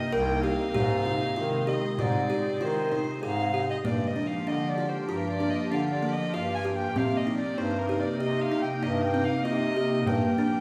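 A gut-toned violin with light vibrato sings the melody over a calm, organ-like pad of sustained chords, its gentle chorus and built-in reverb lending a soft shimmer, as this urgent, hypnotic piece of contemporary chamber music in 5/4 opens. A buzzing, woody kalimba joins with short, bright arpeggios and a clear, distant bass clarinet takes the bass line, while a small frame drum enters at 0.8 seconds, sitting in the background. The ensemble sounds as if in a church or concert hall, the recital-hall reverb wrapping the parts as the harmony shifts at 3.9 seconds into a new section, in this extract cut from a longer work.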